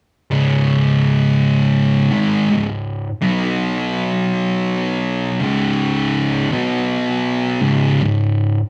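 A slow 54 BPM swung pulse in 4/4 carries this heavy, hypnotic metal excerpt, where a lone thick fuzz guitar, distorted, double-tracked and up front, plays picked power chords moving from C#5 to B5 and back to C#5 between 0.3 and 8.6 seconds, set in a wet studio reverb that gives it the feel of a band playing live in one room.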